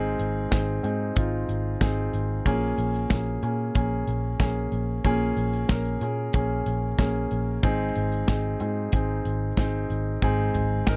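Uplifting and anthemic, this piano-driven pop excerpt in Ab major moves at 93 BPM in a straight 4/4, with an intimate concert grand carrying the accompaniment with deep bass, long sustain and audible action noise up front, a dark, round, foam-muted picked electric bass underneath, and a punchy, polished acoustic drum kit of hi-hat, kick, medium-tuned snare and toms entering at 0.2 seconds, all captured in a dry, close 1970s-style studio sound as the chords shift from Ab to Bbm7 and back.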